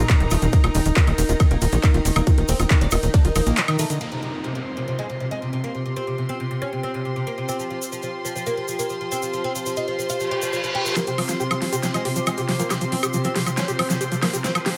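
This psychedelic trance excerpt runs at 138 BPM in a straight 4/4, with an alien, driving mood over Eb5 and then F5 harmony. It opens on a drop where a tight, up-front electronic kick and a punchy sequencer bass (sawtooth and square, ring-modulated, with a filter pluck) push hard until the kick stops at 3.2 seconds. A big-room dance kit adds a huge snare, metallic hats, handclaps, ride cymbal and woodblock, joined by a squelchy, gritty acid bass sitting in the background with distortion and dub echo. Throughout, a bright, woody, plectrum-plucked fretless oud carries the melody through phaser, low-pass filter and dub echo. Beneath it, a wave-folded drone with moving overtones and a resonant moving notch sustains chords with chorus and built-in reverb, while a sul tasto chamber string section adds a soft, intimate bowed texture, and most of these parts pump with sidechain. After a break, the middle stretch from 4.0 seconds strips back to the sweeping drone, strings, oud and background downlifter and riser effects, with a grainy tube shaker rejoining at 7.5 seconds. 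A reverse cymbal leads into the build-up at 11.0 seconds, where the kit returns with a drum fill, the acid bass comes back, and the oud is filter-swept.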